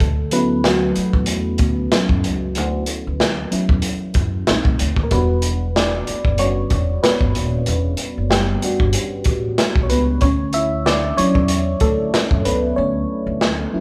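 A mellow FM electric piano, an upright bass and a crunchy breakbeat kit start together at once in this late-night, soulful neo-soul and R&B piece, cut from a longer performance at 94 BPM in 4/4 with a gently swung sixteenth-note feel in E dorian. The electric piano sits up front with a soft, round, dark tone, a noise layer and a fast attack that decays, colored by chorus and phaser as it takes a solo through the whole passage. Beneath it, the pizzicato upright bass gives a woody, steel-string low end, while the mid-forward drums bring a gritty, saturated hi-hat, tight kick and medium-tuned snare with a rolled-off top. The harmony moves from Dmaj7 to B7b9, settles on Em7 at 5.1 seconds, and returns to Dmaj7, with a brief break from 12.8 seconds. The drums stop at 13.6 seconds, and the piano and bass carry on to the end. Light reverb gives the impression of a band playing live together in one room.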